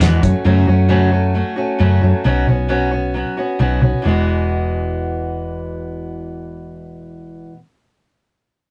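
Nostalgic and jangly, this short rock excerpt moves at 133 BPM in a straight 4/4 in E major, with a picked steel-string acoustic guitar playing F#m and Bsus2 before settling on Eadd9 at 4.1 s. A hollow-body short-scale electric bass sits punchy and round beneath it, while the up-front acoustic guitar carries a dark tone and audible finger squeak, both playing until just past 7 seconds. The rough rehearsal-room sound adds a tight, wet booth ambience and warm saturation.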